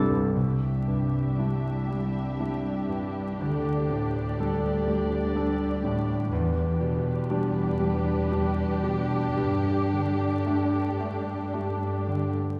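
Cinematic, emotional orchestral film score in C major, moving and hopeful, drifting in rubato 3/4 at about 55-62 BPM, where a bright, brilliant concert grand piano with deep bass sits up front in accompaniment while a ringing concert harp plays arpeggios in the background, a distant muted cello section holds the bass, a veiled con sordino viola section adds soft-attack accompaniment with a smooth top, a close, lush muted violin section carries a second line, and a dark, muted violin melody with vibrato floats in the background from 0.4 seconds, all moving through Cadd9, Gsus2/D, Em7 and Gsus2 in a wet scoring-stage reverb heard from further back in the room, with vinyl crackle, in this fragment cut from a longer piece.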